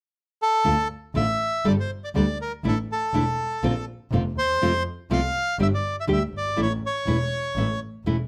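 Melancholic and tense, this short tango fragment in D minor moves at 121 BPM with a rubato feel, its harmony drifting from Dm through Gmadd9 and Bbadd9 to a closing A. A reedy, dark bandoneon carries the melody from 0.4 seconds, dry and up front, while a fingerpicked nylon-string guitar adds classical accompaniment beneath it. A single bowed double bass anchors the low end with a boxy, focused tone and vibrato, all set in light reverb with close, detailed miking.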